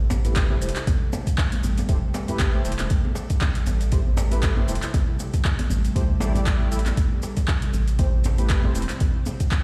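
Hypnotic and driving, this afro house excerpt at 118 BPM in A minor rests on a single Am7 chord, with a deep, up-front electronic kick and a round, dark analog bass with tube saturation pumping beneath metallic hats, cabasa and handclaps from a tape-warm afro-pop kit, soft-handed djembe in the background, brassy detuned synth brass stabs with chorus and delay from 0.2 seconds, an ethereal, airy pad of sustained chords with phaser, and a barely audible sub drop at 0.8 seconds, all heard as if through a big sound system in a bare stone room.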